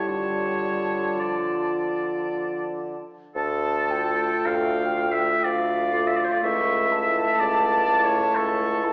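All five wind voices sound together from the first moment in this serene, lyrical fragment of a slow romantic movement for wind quintet, moving in a gentle three-beat lilt with flexible, rubato timing. An airy silver concert flute carries the melody high above with a straight tone and crisp attack, though it sits somewhat distant. The clear oboe, placed up front yet roomy, sings a second line just beneath it. Mellow French horn and a smooth-topped, warm clarinet, the latter set in the background, fill out the accompaniment, while the bassoon anchors the bass; oboe, horn and bassoon all carry a light vibrato. The music shifts into a new section at 3.4 seconds, and the harmony holds on D minor before moving to A over C sharp at 6.4 seconds, all wrapped in the wet reverb of a recital hall heard through a small-speaker sound.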